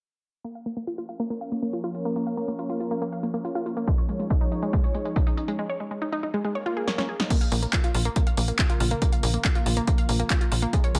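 Uplifting trance with a soaring, euphoric mood, heard as a short cut from a longer piece in straight 4/4. A detuned, ring-modulated unison pluck spins arpeggios from 0.4 seconds alongside a tape-warm analog drum machine of handclaps, hi-hat, snare and crash, its hats and cymbals pumping with sidechain. A thick, chorused sawtooth pad fades in with slow-attack sustained chords, and a punchy electronic kick arrives up front at 3.9 seconds. Filter sweeps move over the pluck through the first section and over the pad across both sections, and then a short break carries a distant electronic swell and a drum fill into the second section. From 7.5 seconds a tight, nasal sequencer bass drives underneath, pumping with the pad and pluck while the pluck trails dub echo. The mix sits in light digital ambience with a low-pass filter over it.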